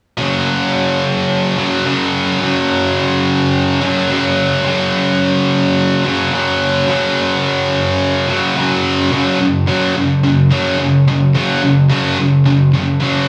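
A light studio reverb surrounds this short cut from a longer metal piece, an aggressive, relentless riff at 108 BPM in straight 4/4, tuned slightly sharp of standard at A4 = 441 Hz. Two distorted, high-gain electric guitars play the riff together from 0.2 to 13.3 seconds, both picked, bright and up front, spanning F#2 to F#3 over an F#5 power chord. One guitar has a heavy tone, while the louder other has a scooped midrange, and the riff moves into a new section at 9.1 seconds.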